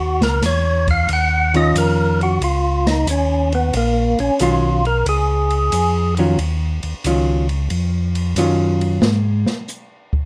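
A swung 4/4 groove sets the pace for this short, bluesy soul jazz organ trio cut from a longer piece, its mood soulful. A percussive tonewheel organ carries the melody up front with a fat, lightly overdriven tone, third-harmonic percussion, key click and a slowly turning rotary speaker, and this solo voice drops out at 6.1 seconds. Beneath it, a second tonewheel organ plays the bass line with a mellow, round, clean sound, vibrato and its own slow rotary speaker. An amplified archtop guitar, electric and hollow-bodied with a picked, shadowy clean tone, adds accompaniment over a single minor ninth chord. An acoustic jazz kit in a small room brings smooth, dusky cymbals, a medium-tuned snare and a punchy kick, and takes a brief solo once the harmony falls away at 9.0 seconds. Light reverb gives the trio a gentle sense of space.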